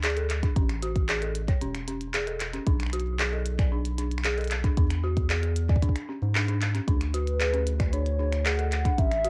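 A straight 4/4 groove of finger snaps, handclaps and clicky hi-hats, run through cassette tape and tape echo, is joined at 0.4 s by a deep, up-front electronic kick, while a round, mellow, wave-folded analog bass moves under the D5, A, Bm, E7 and Dmaj7 changes. Eerie, inharmonic FM bell arpeggios with chorus, plate reverb and analog delay sit under a filter sweep throughout, and at 7.1 s a warbling, nostalgic lead with vibrato and detuned square and sawtooth tones enters. This glitchy, playful IDM fragment, cut from a longer piece, carries the hazy character of a home cassette recording in a modest booth ambience.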